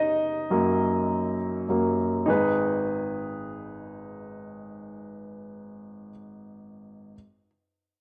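A clear, polished baby grand piano sits up front with cassette-tape coloring, playing solo for the full 7.2 seconds of this earnest, dramatic pop fragment in G# minor at 102 BPM with a light sixteenth-note swing, moving from D#m/F# to G#m at 2.3 seconds within a home cassette recording that carries moderate spring reverb and small-room ambience.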